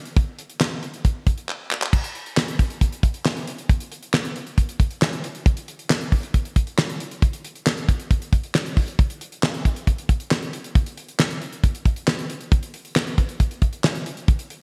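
A straight 4/4 pop groove at 136 BPM comes from a damped, dry, mid-forward 70s acoustic drum kit placed up front, its fat snare, tight kick, hi-hat, handclaps and crash cymbal treated with gated reverb, with a drum fill at 1.5 seconds leading into a new section at 1.9 seconds, all set in a light room reverb within a bright 1980s-style digital production that gives this cut from a longer piece a cool, nocturnal mood.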